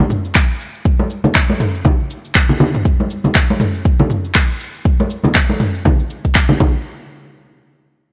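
Hypnotic and spiritual, this short house groove cut from a longer piece rides a swung sixteenth-note feel in 4/4. A layered, produced deep house drum kit opens at 0.1 s, bringing cabasa, finger snaps, handclaps and toms under a studio reverb. A deep electronic kick with a tape-warm weight joins at 0.4 s, sitting up front with its own studio reverb. Ringing, medium-tuned acoustic congas arrive at 1.0 s, played with soft hands and carrying the close sound of a small room. The opening section plays as a drop, and the percussion falls away just before the closing stretch. The mix is dry and gritty with a hardware edge and only a light touch of reverb overall, keeping every part close and present.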